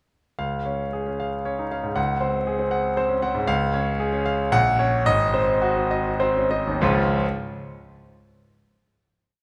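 The recording sits in a wet recital hall with a 1.8-second reverb tail, and the clear concert grand piano is placed up front, present and intimate, with audible action noise and a deep, polished bass. This short, complete classical piece is a virtuoso piano study in 3/4, played with rubato and a sparkling, heroic mood. The solo piano plays from 0.4 to 7.3 seconds, spanning Ab1 to Gb5 in rippling figuration, with a second figure woven in. The harmony moves from Db through Ab7/Db, Gb/Bb and Ab7 before returning home. The playing slows down from 2.7 seconds into a final Db chord at 6.8 seconds, whose long sustain blooms into the hall.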